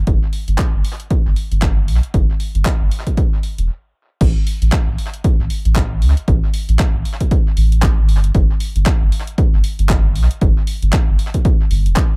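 A round, sine-like sub bass sits up front with sidechain pumping, joined by a punchy analog kick and a layered deep house kit of handclaps, hi-hat and crash washed in tape echo, in a hypnotic, swung deep house excerpt cut from a longer piece that halts at 3.7 seconds before dropping back in at 4.2 seconds.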